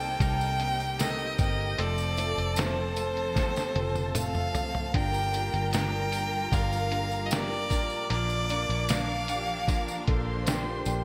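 A clear, close solo violin sings a bowed vibrato melody up front in this heartfelt, hopeful 76 BPM pop ballad in Bb major, over a lush violin section with digital delay, an intimate grand piano with audible action noise and analog chorus, very quiet ensemble strings, a twangy, very quiet direct clean electric guitar in arpeggios, a round, foam-muted electric bass, a jingly tambourine in the background, and a muffled, pitched-down sampler-style drum kit with thumpy kick, fat snare and gated reverb that enters at 0.2 seconds and plays a fill from 3.4 to 4.9 seconds, all moving through Cm7, F, Gm7 and Bb in a bright 1980s-style digital production with small room ambience.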